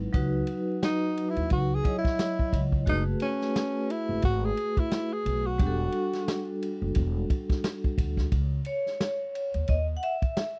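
A dry, close 1970s-style studio sound with vinyl crackle frames this smoky, nocturnal jazz-hop excerpt, moving at 88 BPM in C# minor with a 16th-note swing over chords like C#m11, F#madd9 and Em11. A breathy tenor saxophone carries the melody with subtone, vibrato and scooped notes from 0.8 to 6.5 seconds, over ringing vibraphone with medium motor vibrato, woody pizzicato upright bass, and a vintage drum kit with dark cymbals and a punchy kick. At 8.3 seconds the metallic vibraphone takes the solo as the chord shifts to C#madd9.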